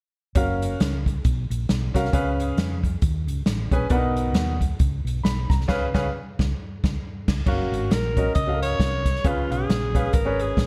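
A dark, warm production with light small-room reverb frames this reverent, soulful uptempo gospel excerpt, swinging at 135 BPM in F# major over chords like F#maj7, C#7 and Bmaj7. A clear baby grand piano with audible action noise and long sustain, a round, punchy hollow-body electric bass and an airy, polished big-band drum kit with a punchy kick play together from the start, hitting a band accent between 5.7 and 7.5 seconds. At 7.5 seconds a raspy, gritty alto saxophone with vibrato and tape echo enters up front to carry the melody.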